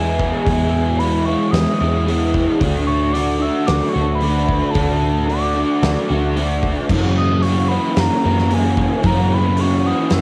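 A straight 4/4 pulse from a huge arena drum kit with a fat snare and punchy kick, entering at 0.2 s, drives this dreamy, blissful shoegaze and dream pop rock excerpt, where an up-front, double-tracked, crunchy overdriven guitar riff with analog chorus and cassette-tape coloring sits over a dark, round, foam-muted picked electric bass, while a soft octave-layered synth lead floats high with chorus, tremolo, vibrato and tape echo as the chords move from Emaj7 to D to F#7, all set in a small room ambience captured at home on cassette.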